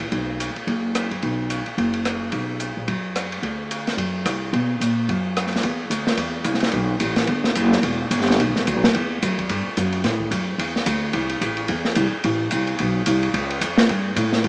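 Modal jazz with a searching, hypnotic mood, this brief cut from a longer piece moves at a brisk swing, carried by a pizzicato upright bass with a woody steel-string tone and an airy, polished acoustic drum kit, both placed up front from start to finish. The kit's dark cymbals, medium-tuned snare, boomy kick, hi-hat and rim click sit in a small room, while the bass roams its low register, and the music settles into a minor-key passage at 5.6 seconds. Light reverb and a small-speaker sound give the whole recording a compact, intimate character.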